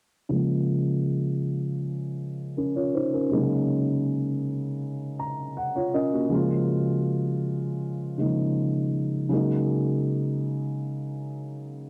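A felt-muted upright piano carries this short, smooth R&B fragment, its thick felt giving a soft, dark, boxy tone that sits up front and feels intimate. Playing in Db major at 80 BPM in a straight 4/4, the piano serves as accompaniment from 0.3 s to 11.9 s, moving from a Db6 chord to an Ab9sus4 at 3.3 s. A brief piano fill between 4.8 s and 6.3 s adds a tender flourish, while a filter sweep across the piano's whole span shifts its mellow colour. The low-pass filter and cassette tape treatment lend a hazy, homemade character. Light reverb and small room ambience frame it like a private home recording cut from a longer piece.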